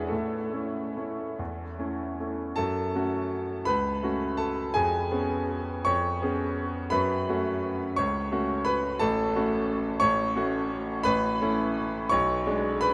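Playful and elegant, this short classical piano waltz in 3/4 moves with a flexible, rubato feel, cut from a longer piece. A bright concert grand plays alone from 0.0 to 12.9 seconds, its brilliant, up-front tone reaching from deep bass notes to a bright upper register, while a huge, wet reverb places it in a vast, echoing space. After a brief opening passage, the music settles into a second section at 2.6 seconds, moving through harmonies in F# minor before landing on a diminished chord at 12.1 seconds.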